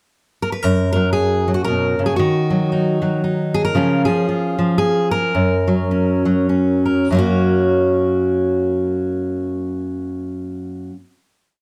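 Folk piece for solo fingerpicked steel-string acoustic guitar in a lilting swung 3/4, nostalgic and warm in mood, its full-bodied dreadnought tone sitting up front as rolling arpeggios carry a motif-based melody in balanced phrases, slowing from 3.7 s before settling onto a final chord held from 7.1 s in a short reverberant studio room.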